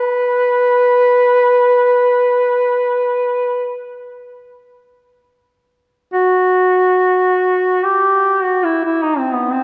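Mournful and solemn, this short fragment of a Caucasian folk lament in free time features a warm solo duduk, up front yet distant and roomy, singing with vibrato and scooped notes between B3 and B4 as it slows from 1.6 seconds onward, all held in a wet church reverb with a 2.8-second decay.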